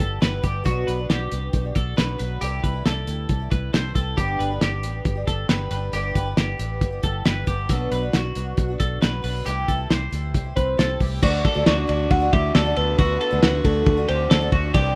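A rough home demo sound with light reverb frames this bright, nostalgic fragment of jangly indie pop, cut from a longer piece and moving at 136 BPM in a straight 4/4. A cloth-damped drum kit sits up front, thuddy and muffled with a fat snare, tight kick and dark cymbals, its saturated, gritty tone rolled off at the top. Beside it, a vintage fingered electric bass, foam-muted and round, holds the low end with an amped, dark character. A boxy, parlour-style twelve-string acoustic guitar is picked through the accompaniment, shimmering and octave-doubled in plate reverb, while a twangy, compressed twelve-string electric guitar spins clean arpeggios through plate reverb and tape echo. The harmony moves through Em/G, Bm, C6 and G before reaching D as a new section arrives at 11.2 seconds, just after a soft, octave-layered synth lead enters at 10.6 seconds with a full, detuned, sustained voice, carrying chorus, vibrato and plate reverb.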